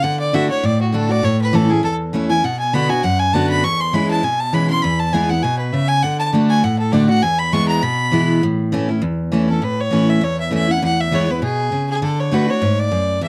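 A clear, biting fiddle opens this rustic, driving bluegrass excerpt, playing a solo melody from the start over a picked steel-string acoustic guitar at a brisk 200 BPM in 4/4 with a light swing on the eighth notes. The fiddle is a single bowed player, close and up front, with an airy, earthy tone and a touch of plate reverb. It ranges from F#4 to C#6. The full-bodied dreadnought guitar sits slightly louder beneath it, also up front, supplying accompaniment from E2 to F#4 in A major. The chords move through D, A, Bm and E6 before returning to D, E and A. At 9.6 seconds the solo gives way to a new section that turns toward E and D. The production is dark and warm, set in a booth with a moderate, short ambience, and the recording is cut from a longer piece at 13.3 seconds.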